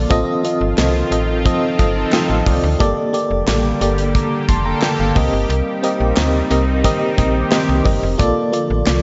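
A nostalgic, glossy slice of 1980s-style pop at 89 BPM in a straight 4/4, built on a mellow FM electric piano with tremolo and slapback echo that sits up front, a snappy slap-like FM bass with a metallic attack, and an evolving, full-bodied resonant pad swelling beneath on sustained chords through F7, Gmadd9, Cm7 and Bbmaj7. A dark, smooth studio drum kit with a tight kick enters at 0.1 s, a hollow, very quiet group handclap joins at 0.8 s, and round synth brass stabs with chorus and delay drift in the background from 1.5 s, while the electric piano plays a brief fill around 1.8 s. A lush hall reverb gives the mix a big arena sound with a rolled-off top end.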